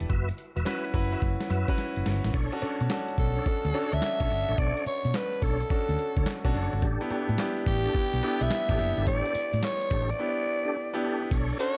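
A swung new jack swing groove from a gritty, thumpy sampler-style drum kit with handclaps and tambourine drives this slick, confident R&B excerpt, where a round, punchy hollow-body bass and bright grand piano with audible action noise play alongside clean tonewheel organ stabs through a fast rotary speaker, before a raspy, scooped alto saxophone takes the melody up front at 3.2 seconds over a dark production with light reverb.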